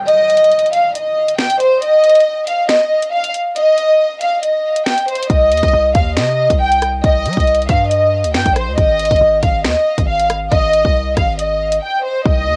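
Drill hip hop at 138 BPM in a half-time feel, menacing and dark, cut from a longer piece and heard through moderate studio reverb on a home cassette recording. A faint electronic downlifter sits in the background as an intimate, close violin section carries the melody up front with light vibrato and sul tasto bowing, over an electronic drill kit of hard-clipped kick, sharp snare, rim clicks, finger snaps and bright hi-hats, both parts colored by cassette tape. A punchy, heavy 808-style sine bass with a noise layer arrives at 5.3 s under Cm and Ab5 chords, the drums drop out briefly at 11.8 s, and a very quiet, glassy FM pad with ensemble chorus surfaces only in the final moments at 12.4 s.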